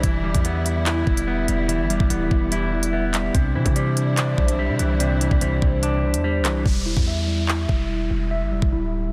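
A drill beat in E minor opens at 145 BPM with a half-time feel, its electronic kit up front with a knocking kick, crisp hats, claps and rim clicks under a punchy, heavy 808 bass, while a mellow tine electric piano arpeggiates through chorus and delay over Em7 and Cadd9. A dark, fingered clean electric guitar with spring reverb sits forward, and a lush bowed string section holds sustained chords in the background, setting a cold, tense mood. At 6.7 seconds the guitar and strings drop out, the hi-hats mute and a downlifter sweeps in as the chords return to Em7, all inside a digital ambience and a dense, heavily limited master.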